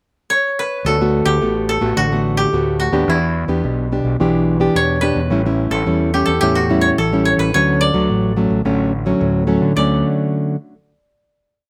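Lively and festive, this short, complete samba and choro piece moves in a straight 4/4 feel. A bright, woody koto played with fingerpicks enters first at 0.3 seconds, carrying a motif-based melody of song-like phrases, dry and up front with a slapback echo. A growling fingered electric bass joins at 0.8 seconds with a punchy, overdriven samba bass figure, its amped, direct tone sitting beneath the tune. Just after, a nylon-string guitar with fresh strings takes up the accompaniment, fingerpicked in a classical manner with thumb bass and syncopated plucked chords, and it is the most prominent part in the mix. The harmony moves from D6 through Em7 and A7 to Dmaj7, and the guitar rings on alone after the other two parts stop at 10.0 seconds, closing the piece on a final chord. Light reverb gives the open-air recording a touch of space.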